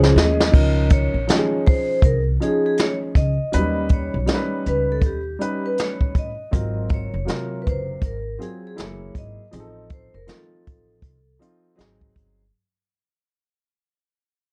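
An 80 BPM groove in 4/4, swung on the sixteenths, opens with a brief drum fill on a jazz brush kit before the music fades out gradually from 0.5 seconds onward in this cut from a longer jazz-hop track in Db major. The brushed kit sits up front, with dark cymbals, a medium-tuned snare, a punchy kick, hi-hat and crash, all roughened by vintage 12-bit sampler grit. A pizzicato upright bass with steel strings adds a woody, warm low end. A dark, mellow upright piano fills out the accompaniment over smooth jazz changes moving from Dbmaj7 and Db69 through Eb7b13, Ab13, Gb9 and F7 to Ab7. The vibraphone, played with medium hard mallets and a slow motor vibrato, carries a metallic, ringing melody in a boxy small room, stopping at 11.8 seconds just before the others. The overall sound is dark and warm, with a modest small-room ambience and a warm, smooth mood.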